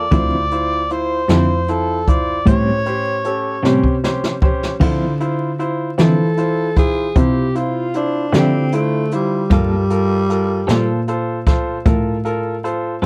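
Soulful and brooding, this slow blues in D minor moves at 51 BPM in a straight 12/8, with the harmony shifting from Dm9 to A7#9 and later to Gm9. An overdriven, gritty harmonica carries the melody up front, its scooped notes, light vibrato and tongue slaps giving it a jazz flavour until it stops at 4.0 seconds. A brushed jazz drum kit with dark cymbals and a boomy kick sits in a small, roomy space and plays a fill into the second section, where a growling tenor saxophone enters at 6.0 seconds with a breathy, raspy subtone and a smooth top. Underneath, a bowed cello supplies a nasal, gut-string bass, a bright upright piano adds woody accompaniment with audible action noise, and a clean, compressed electric guitar with tremolo stays in the background. The sound is dry, with vinyl crackle running through this excerpt.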